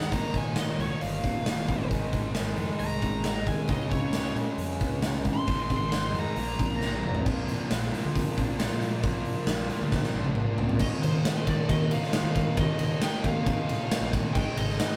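A straight 4/4 pulse at 135 BPM drives this anthemic, cathartic quiet-loud alternative rock excerpt, with a punchy, up-front acoustic drum kit in a bright stone room hitting crash, ride, hi-hat, toms and a medium-tuned snare, with fills around 6.8 and 9.9 seconds. Behind it, a thick fuzz guitar and a bright overdriven electric guitar grind out riffs over a growly, fingered fuzz bass, moving through chords from Ebsus2 to Ab, Db and Bb. A high-gain lead guitar sings a solo melody up to C6 until 7.2 seconds, then returns at 10.8 seconds, all captured in a rough rehearsal-room recording with light reverb.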